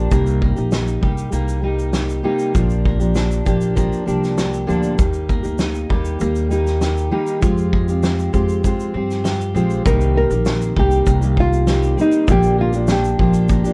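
A full-bodied fingerpicked steel-string acoustic guitar, a woody, thumpy pizzicato upright bass and a bright, twangy twelve-string electric guitar playing arpeggios in the background open this wistful, reflective acoustic pop excerpt, with a loose indie drum kit bringing a punchy kick, fat snare and shaker. The chords move from Cm7 to Bb6, Eb and Fmadd9 in a dark, dry production. At 9.9 seconds a warm, thumb-plucked nylon-string guitar enters with the melody as a new section begins.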